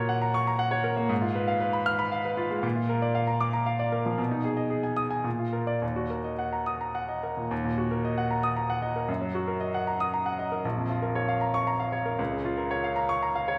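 A bright baby grand piano, up front and natural, carries this solo excerpt from a classical virtuoso piano study in Eb minor, spanning the keyboard from Bb1 to F6 with a brilliant tone and long sustain. The mood is agitated and passionate, moving in 3/4 at 116 BPM with a flexible, rubato feel that lets the phrasing push and yield. The harmony opens on Gb over Bb and passes through a diminished chord before settling on Bb, then reaches Eb minor at 5.8 seconds. A second section begins at 7.5 seconds and runs to the close at 13.6 seconds, turning toward Bb minor. The instrument sits in a church or concert hall, wrapped in a moderate reverb with a 1.8-second decay that gives the ringing notes space to bloom.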